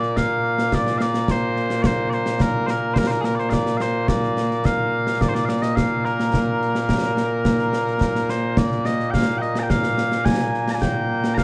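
Mellow small bagpipes sing a sweet, continuous melody with vibrato up front over concert snare and bass drum with bright cymbals in a live room, giving this proud, ceremonial Scottish pipe excerpt in Bb major at 107 BPM a dark production with light reverb, with a new section arriving at 8.6 seconds.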